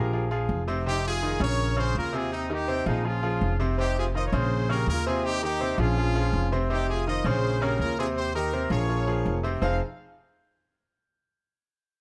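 Lightly reverberant and up front, this short, driving, passionate salsa cut in F minor at 164 BPM pairs a brilliant, punchy horn section carrying the melody with bright grand piano accompaniment over a progression moving through Fm7, Bbm7 and Eb6 and a woody, thumpy plucked upright bass, all three playing together from 0.0 to 9.8 seconds.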